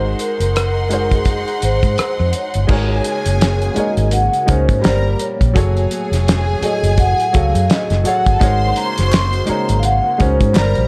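Over a lightly swung 4/4 groove with a 16th-note lilt, this lush, romantic 1970s-style soul excerpt sets a ringing, soft-mallet vibraphone melody with fast motor vibrato against a close, smooth studio violin section bowing a second line with vibrato. Underneath sit an intimate grand piano with audible action noise, a round, foam-muted fingered electric bass, and an up-front, cloth-damped drum kit with a fat snare, tight kick, rim clicks and dark cymbals. A silky string machine with phaser and ensemble chorus slips into the background at 2.7 seconds, and very quiet, crisp group handclaps appear at 9.1 seconds, all inside a dark, warm small-room production.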